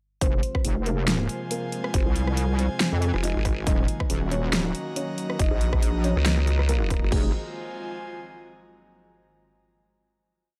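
Heavy wobble dubstep in a half-time, swung feel, aggressive and menacing, built as a single drop over Fm and Ebm that resolves to a final Fm chord at 7.1 seconds. The low end is dominated by two up-front wobbling basses: one is a detuned, overdriven square-and-sine unison with chorus, and from 1.9 seconds a nasal, resonant vowel-sweep bass joins in, its formant filter answering the first with phrases of changing wobble speed. An overdriven, punchy electronic kick drives the half-time groove alongside a layered dance kit with a huge snare, rim clicks, closed hi-hats and crashes. Floating above, a felt-muted upright piano plays a mellow, intimate repeating riff in octaves with delay, while a lush supersaw pad sits in the background with phaser, sidechain pumping and a low-pass filter. An airy, breathy pad with a noise layer and chorus carries slowly shifting chords and rings on after the rest to close the piece at 8.8 seconds, all in a dark, warm, dry production.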